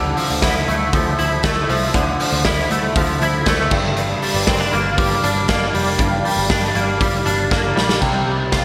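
A twangy, clean electric guitar plays bright picked arpeggios up front, coloured by ensemble chorus, digital delay and slapback echo, in a nostalgic, youthful stretch of jangly indie pop at 118 BPM cut from a longer piece. A dark, round, foam-muted picked bass sits beneath it from the start, and a gritty, saturated garage drum kit with a boomy kick and pumping room sound comes in at 0.2 seconds, playing a fill from 7.5 to 8.0 seconds. The chords move from Dmadd9 to Gm to Csus4, all bathed in a lush hall reverb that gives a big arena sound.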